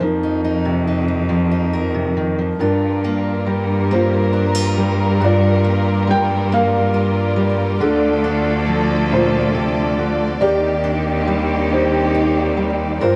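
An acoustic folk-pop ballad in a slow, straight 6/8 at 46 BPM, heartfelt and hopeful in mood. A mellow, felt-muted upright piano carries the intimate melody over fingerpicked steel-string acoustic guitar, with audible finger squeak, and a bowed solo cello singing the bass up front with rich vibrato. At 2.6 seconds a dark studio string section enters with soft, sul tasto sustained chords as the harmony moves from F7sus4 to Gm7, Dm and Cmadd9/Eb, all within a moderate echo chamber reverb in this short excerpt.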